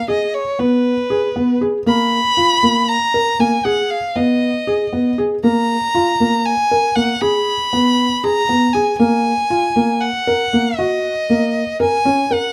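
A rich, smooth violin carries the melody from the very start, its single bowed line sung with vibrato and an even tone up front in the mix. Beneath it, a felt-muted upright piano enters at 0.1 seconds with soft, intimate arpeggios, its mellow sound close enough to reveal the gentle clatter of its action. This contemporary instrumental piece moves in a brisk 7/8 at 235 BPM counted in eighths, with a straight feel that gives the pensive mood a hypnotic, circling quality. The harmony turns around A-flat minor, passing through rootless colorings and a G-flat chord before settling on E-flat minor near 10.8 seconds. Close, detailed microphones and a light reverb keep both players natural and near, and the passage sounds lifted from a longer work.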